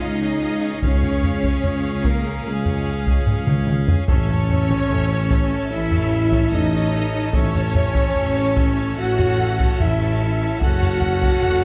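A cinematic, epic orchestral film score excerpt at 74 BPM, dramatic and relentless, where a mellow, close-miked French horn section holds sustained chords over dark tuba and rich, distant cello and double bass sections. A clear violin section carries the melody against a bright second violin line, a bright viola accompaniment and a hollow clarinet stop on pipe organ, while a compressed, saturated taiko ensemble with heavy sticks enters at 0.8 seconds and plays a fill from 3.3 seconds, all in moderate scoring-stage reverb as the harmony moves from Db to A and then Gbm.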